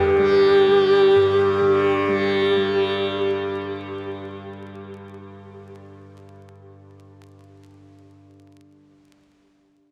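A breathy, hollow bansuri with vibrato and an analog delay sits up front for the first 3.6 seconds of this serene, meditative Indian classical excerpt at 136 BPM in 7/4, over a buzzing, shimmering tanpura drone spanning G2 to G3 that carries on alone until 9.1 seconds, all bathed in a huge, dreamy ambient reverb with vinyl crackle.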